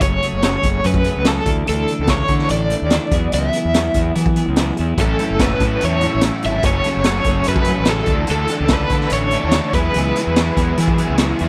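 Indie rock with a jangly, carefree mood, where a raw garage drum kit with a high-tuned snare and boomy kick plays alongside a bright, twangy twelve-string electric guitar riff and a round fuzz bass, while a crunchy overdriven guitar carries the melody through tremolo and slapback echo and a second overdriven guitar riff with ensemble chorus joins at 5.0 seconds, all captured as a dry, close 1970s-style studio recording.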